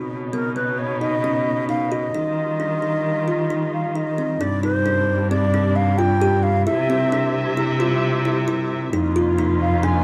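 In a straight 5/4 at 132 BPM, this restless, playful chamber excerpt sets a woody, ringing kalimba's arpeggios and a rich bowed cello bass alongside lush, distant sustained string chords, while an airy, crisp baroque flute carries the melody up front from 0.3 seconds over a dark, lightly reverberant production that moves from Badd9 and Ebadd9 into Gsus4, C and Fsus4.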